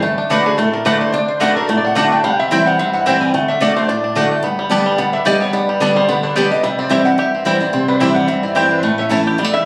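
A bright, twangy banjo sits up front in this virtuosic, driving bluegrass fragment at 218 BPM with a swung feel, sharing the melody with a metallic, nasal slide resonator guitar played with fingerpicks, while a picked steel-string acoustic guitar carries the accompaniment and a woody, double-strung mandolin adds stabs from 0.3 to 9.2 seconds over a D, C, Gadd9 and A progression, all captured on a phone in a club with moderate reverb.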